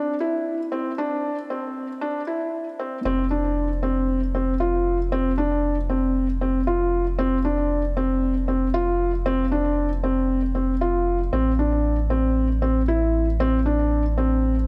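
A straight 4/4 pulse at 116 BPM carries this luminous, tender electronica piece in F major, cut from a longer work and moving from Am to F5 and back to Am. A soft, felt-muted upright piano plays an intimate, mellow riff up front through a digital delay, while a deep, round sine sub bass with a fast attack and sustained tone sits close beneath it. Both parts bloom in a lush hall reverb, and the build-up gives way to a drop at 3.1 seconds, with the piano stopping at 14.5 seconds just before the bass.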